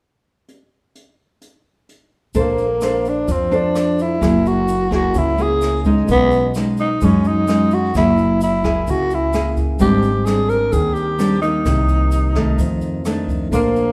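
Set in a moderate recital hall reverb, this sunny, relaxed bossa nova excerpt has the spacious, resonant sound of a church or concert hall. A distant, roomy jazz brush drum kit opens alone at 0.5 seconds, with hi-hat, a boomy kick drum and rim clicks. At 2.3 seconds a fingerpicked, classical nylon-string guitar joins up front with audible finger squeak, alongside a woody pizzicato upright bass with steel strings and a grainy, mellow tube shaker sitting close and dry in the background. From 2.4 seconds a growling tenor saxophone leads the melody up front, breathy and raspy in subtone with vibrato, scooped notes, a soft attack and a smooth top. The harmony moves through lush extended chords, opening on Bbmaj9 and passing through Gb9, B69 and Abmaj9#11 before settling on Cm7 and F6.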